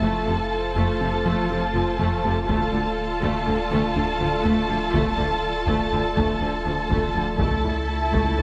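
Brooding and futuristic, this hybrid orchestral and electronic film cue builds in a five-beat metre as a dark, up-front violin section sings a second line with portamento and vibrato over a rich viola section, a very quiet cello section, a background double bass section and a deep, punchy sub bass. A warbling, lo-fi tape-like pad with chorus holds sustained chords while a very quiet, glassy wavetable pluck with a filter sweep traces arpeggios, and hard-stick taiko drums enter in the background at 2.5 seconds. The chords move from F to D minor to A over C#, and a scoring-stage reverb bathes the whole build-up in this excerpt cut from a longer piece.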